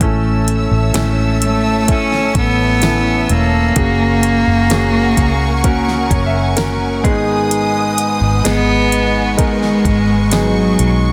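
This melancholic, heartbroken pop ballad opens with a clear, open baby grand piano ringing with long sustain up front, a lush bed of smooth bowed studio strings, a dark, round, foam-muted electric bass and a produced electronic drum kit with a soft kick, fat snare and metallic hats. At 1.4 seconds a single cello takes the melody, intimate and close, with an airy sul tasto bow, soft attack and light vibrato. The piano adds a fill at 5.6 seconds as the chords move from A through F#add9 to G# minor, all set in light reverb and studio ambience on a dense, heavily limited modern master.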